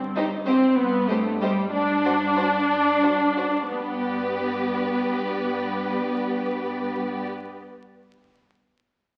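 An up-front, focused viola section carries the accompaniment from 0.2 s in this graceful, spirited excerpt from a quick classical-period movement for string orchestra in G major, in 6/8 at 57-67 BPM (dotted quarters) with rubato, as a smooth, even cello section holds a G2 bass from 0.0 s, and from 0.2 s an expressive, close chamber violin section plays the second line while a lush studio violin section with a smooth top carries the melody in the background, the music slowing down until 3.7 s, when the harmony arrives on G, all heard through a wet scoring-stage reverb and the crackle of a very old 78 rpm record.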